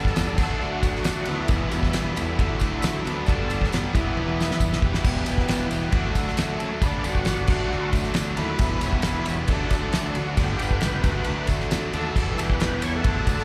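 Driving and swaggering, this short classic rock passage moves in a straight 4/4, cycling through D, E minor and Gadd9 chords across two matching sections. An overdriven tonewheel organ carries the melody with a thick, gritty tone, third harmonic percussion, chorus vibrato, a slow rotary speaker and slapback echo, while an octave-fuzz lead guitar sits further back with a distorted second line, also touched by slapback echo. Three electric guitars share the riff: a double-tracked cranked stack guitar and an overdriven semi-hollow guitar with a hollow-body brightness and slapback echo, both in the background, plus a very quiet, tight distorted guitar. Underneath, a fuzz fingered electric bass gives a dark, round, overdriven low end, and a very quiet string machine playing violas holds mellow, vintage sustained chords with a soft attack and ensemble chorus. The damped 70s drum kit is dry and up front, with a fat snare and tight kick, and a drum fill from 4.2 to 5.0 s leads into the repeat. 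A jingly tambourine joins at 0.2 s, and the whole band sounds like a live gig heard through the venue's PA in a reverberant recital hall.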